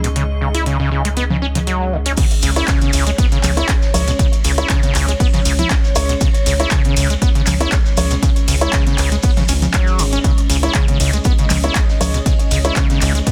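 Acid house with a trippy, hypnotic pull, this excerpt from a longer piece opens on a squelchy, overdriven acid bass riff under a filter sweep, its gritty sawtooth tone carrying lush chorus, vintage 12-bit sampler grit, tape echo and sidechain pumping. Around it sit a moody, detuned analog pad with chorus and phaser, a round, deep analog bass line, boxy dark grand piano stabs with tape echo, and a booming analog drum machine with metallic hats, congas, handclaps, ride and crash. A blurred granular cloud pad hangs in the background through the opening, dropping out at 2.2 seconds as the drop arrives. From there a dry, punchy electronic kick sits up front, alongside a distant, roomy brush kit playing very quietly and grainy maracas tucked behind. The swung sixteenths keep the groove loose, and the dense, heavily limited master with light reverb keeps the whole mix tight and forward.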